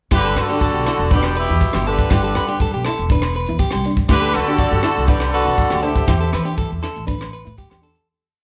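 A carefree highlife guitar band opens with the whole group playing live together in one large, moderately reverberant room. A punchy, up-front horn section states short hook phrases with light vibrato and tape echo, partly doubled in thirds, while a raspy, growling tenor saxophone adds a lower harmony line, mostly in sixths. Beneath them, a clean, twangy electric guitar picks a bright arpeggio ostinato with a warbly pitch drift, and a small nylon-string guitar with old strings fingerpicks its own ostinato softly in the background. A woody pizzicato upright bass drives a syncopated riff against a tight, dry drum kit of kick, hi-hat and rim click, with a ringing, band-limited agogo bell time line and grainy, distant maracas far behind. The harmony moves from G to Dsus4 at 4.1 seconds and on to C, as the piece fades out from 6.1 seconds, with horns and saxophone dropping away at 6.6 seconds.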